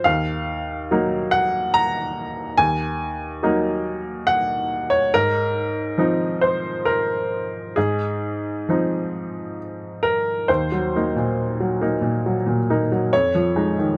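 A lone upright piano opens this short neoclassical minimalist passage, its clear, woody, vintage tone placed up front and caught by close, detailed microphones in a dry room. The playing moves in a loose, rubato three-beat lilt, reflective and melancholic, spanning from deep bass notes to bright upper register. At 10.5 seconds a new section begins, and the fragment, cut from a longer piece, ends at 14.0 seconds.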